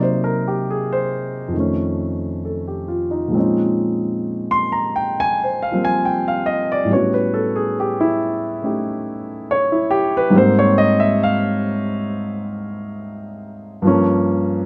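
A lone grand piano opens this short solo jazz passage, its dark tone setting a smoky, cool mood from the first chord. The playing moves at a slow, unhurried pace, with a swung eighth-note feel loosened by rubato. The harmony drifts through rich extended chords, starting on Cm7b5 and F7b13 before settling into Bbm11, A13 and Abmaj9, then turning toward Gm7b5 near the close at 13.8 seconds. The piano covers a broad span from low bass notes to the upper register, and its mellow sound sits up front in a light reverb. Lasting about 14.7 seconds, the passage is cut from a longer piece and feels like a late-night reverie caught mid-thought.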